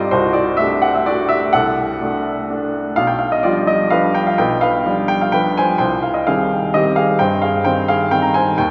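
Bittersweet and elegant, this brief classical waltz fragment in 3/4, cut from a longer piece, features a solo upright piano with a woody, polished tone and long sustain, sitting up front in a wet church reverb and moving with rubato through D7/C, G7/B and Cm across its 8.7 seconds.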